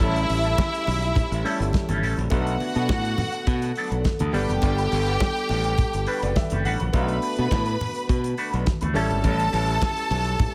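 Light reverb and a small room ambience frame this glamorous, driving disco excerpt at 104 BPM in B minor, moving through A7, Bm7 and Gmaj7. A punchy, up-front fingered electric bass and a damped 70s drum kit with a tight kick and a dry snare anchor the groove. A lush, bowed string section carries the second line with vibrato over a dark, clean electric guitar treated with wah and warbly pitch drift; in the background, a clear grand piano with audible action noise plays a fill from 5.8 to 6.9 seconds, a mellow French horn section holds sustained chords, and low-tuned congas played with hard hands join at 0.6 seconds.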